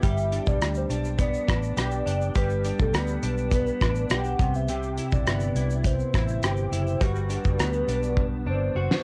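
A hazy, laid-back indie and bedroom pop excerpt in G major at 103 BPM opens with everything at once: a cloth-damped, thuddy drum kit with a fat snare, tight kick, rim click, hi-hat and shaker sits up front beside a clean, compressed, direct-recorded electric guitar soaked in ensemble chorus and vibrato. Underneath, a dark, foam-muted fingered bass adds a round low end, while a soft, octave-layered synth lead with a sub octave, gentle attack and sustained triangle-and-sine tone carries the melody through phaser, subtle chorus and analog delay. The chords move from G to Cmaj7 at 4.4 seconds and Gmaj7 at 7.0 seconds, a drum fill arrives at 8.2 seconds, and the synth, guitar and drums share a cassette-tape haze within a lightly reverberant home-recording sound.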